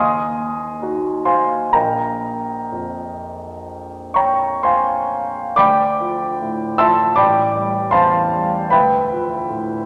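Bathed in a lush concert-hall reverb, this hazy, nocturnal fragment of impressionist classical solo piano drifts with rubato between 61 and 81 BPM in 4/4, its up-front, present grand piano ringing with long sustain from the low bass to the high treble across Ebm6 and Bbmadd9 colors in B-flat dorian before shifting at 5.6 seconds into D dorian through Dmadd9, Am7 and Dm6.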